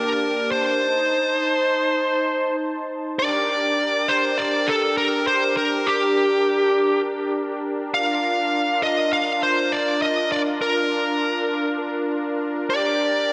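A bright, 1980s-style digital sheen and a lush hall reverb with a 2.1-second tail give this short synthwave fragment, cut from a longer piece, a nostalgic, nocturnal glow. It moves at 101 BPM in a straight 4/4 in G minor. A smooth, overdriven electric lead guitar, picked and placed up front with delay, carries the melody between G4 and F5 across the full 13.3 seconds. Beneath it, a bold, brassy analog pad built from detuned sawtooth tones holds sustained chords from Bb3 to A5, its soft attack colored by chorus, vibrato and a filter sweep. The harmony opens on Gmadd9 and Adim, then settles into a longer passage from 3.2 seconds that moves from Gm to Bb before returning to Gm.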